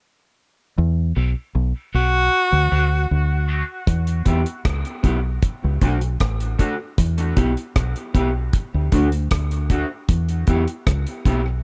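After a short break, a round, foam-muted fingered electric bass opens this heavy, deep dub reggae excerpt at 77 BPM in E dorian, soon joined by a dark, slightly broken-up electric guitar bathed in lush chorus and dub echo, while a clear, punchy tenor saxophone with vibrato sounds a brief F#4 phrase from 2.0 s and a dry reggae drum kit with a tight kick, hi-hat and rim click enters at 3.9 s, all over alternating Em and D chords in a small room.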